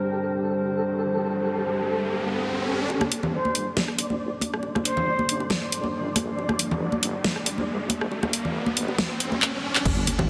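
A dark, nasal analog pad holding G minor chords and a flickering, grainy texture open this cavernous, heavy deep dubstep excerpt at 138 BPM in a half-time feel, with an electronic riser and sub drop building from 0.7 seconds. At 2.9 seconds a deep, wobbling bass settles in the background, joined by ringing, close bongos and congas with dub echo and an up-front dubstep kit with a huge snare and bright hats under low-pass filtering, while a breathy, bamboo-toned shakuhachi with vibrato sounds a brief filtered, echoing melody on C5 from 3.3 to 5.5 seconds. A drum fill leads into an impact at 9.9 seconds, where a punchy, overdriven electronic kick arrives, all within a huge ambient reverb and a dense, heavily limited modern master.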